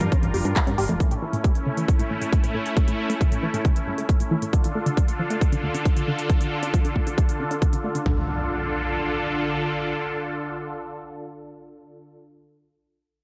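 Bittersweet and driving, this uplifting trance excerpt opens with an evolving, detuned supersaw swell holding sustained chords up front, over a tight sequenced sawtooth arpeggio that carries a filter sweep, chorus, phaser and tape echo, both pumping to the sidechain. A round, dark FM bass sounds only in the first second, while a house kit with a punchy kick and toms plays alongside an overdriven big-room kit of congas, handclaps and crisp hats. Within the first five seconds the harmony moves from Gm7 through A to Dm, all in a light reverb, and after about 8 seconds the drums and arpeggio fall away, leaving an electronic impact beneath the swell.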